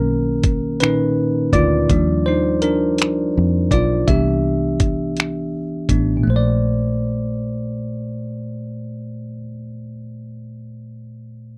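Tender and sensual, this short excerpt cut from a longer piece is a slow R&B groove in six-eight at 55 BPM, settled in Bb major with a straight feel. A bell-like tine electric piano sits up front with a bright, clean tone, carrying the harmony through rich major-ninth chords and taking a solo from the start until 6.3 seconds. Beneath it, a fingered electric bass with a round, foam-muted sound holds the low end until 9.3 seconds. A dusty soul sampler-style drum kit, compressed and gritty with a thumpy kick, adds finger snaps and hi-hat between 0.4 and 6.1 seconds. The sound is dry and close, like a 1970s studio recording with little reverb, and after the drums fall away the piano carries on into a second section, ringing out until 11.6 seconds.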